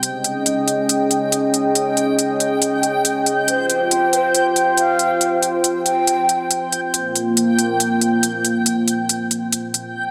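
A dark analog pad sits up front in this meditative, cavernous slice of deep dubstep, holding sustained chords built from detuned sawtooth and triangle tones with a sub octave, a slow attack, long release and chorus. The track runs at 139 BPM in 4/4 with a half-time feel and a 55% swing on the sixteenths, tuned slightly low to A4 = 437 Hz. A crisp, layered electronic hi-hat with a tape-warm edge stays forward in the mix, while a reversed, granular texture swells softly underneath on a bright, dreamy G5 with its own reverb. A breathy, mellow low ney carries the melody between 3.5 and 6.5 seconds, its end-blown reed tone soft in attack, rolled off in the highs, touched with vibrato and trailed by dub echo. The harmony moves through Db5, F5 and Bb5 chords, and a lush hall reverb wraps the whole cut-out passage in a deep, spacious wash.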